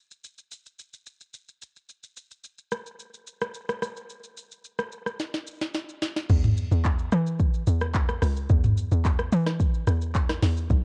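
Amapiano at a soulful, warm mood, this short cut opens on an electronic afro-pop drum kit with a deep kick, sharp snare, metallic hats, rim clicks, shaker, handclaps, toms and crash carrying a cassette tape colour, passing through a fill from 5.2 seconds into a drop at 6.3 seconds where a punchy, FM-toned log drum bass with a noisy, fast-attack, decaying bite joins up front in a dry home cassette recording.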